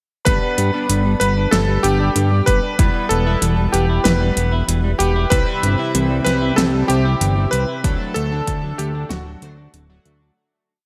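A thick, saturated analog bass pumps up front under a punchy, overdriven machine kick and an 80s pop kit with a fat snare and metallic hats, driving this nostalgic synthwave piece through a G, Em, C, D progression. A clear, clangy electric grand piano carries the hook-phrase melody, doubled an octave higher by a dreamy FM electric piano with chorus and phaser, while a clean picked guitar arpeggio and glossy chorused polysynth stabs sit in the background with digital delay and slapback echo. A lush detuned unison pad joins at 5.3 s, and the whole track, bathed in a big arena-style hall reverb, fades out from 7.0 s.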